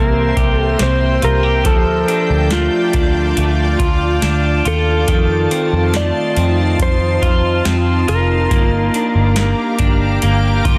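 Ethereal and haunting, this short dream pop excerpt from a longer piece moves at a slow 70 BPM in straight 4/4, set in G minor over a progression of C7, Dmadd11, F7 and Gm7. A dark, clean lap steel guitar, slid with fingerpicks and sent through digital delay, carries the melody until 9.8 seconds, while an electric guitar at the edge of break-up plays up-front arpeggios coloured by lush chorus and delay. Around them a shimmering pad holds detuned, granular chords with an octave-up sparkle, slow attack and long release, and a very quiet reversed texture swells on a single note at the opening and again in the final fraction of a second. A vintage foam-muted picked bass sits round and forward in the mix, and a booming analog drum machine enters at 0.4 seconds with a deep kick, crisp snare and metallic hats. Light reverb gives the whole a digital ambience, and the master is dense and heavily limited in a modern style.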